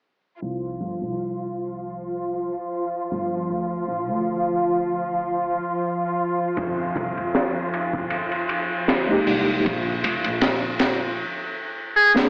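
Muffled, radio-thin home-cassette sound with spring reverb and a filter sweep frames this brooding, melancholic trip hop excerpt at 78 BPM in swung 4/4, where a lush bowed string section holds sustained chords over woody, growly pizzicato upright bass through C5, Dm, Fm11 and Bb5, a crunchy, saturated breakbeat kit with a high-tuned snare and dark cymbals enters at 6.6 seconds, a tine electric piano with tremolo, sampler grit and tape echo joins at 9.1 seconds, and a buzzy, distant muted trumpet sounds one brief note at 12.0 seconds.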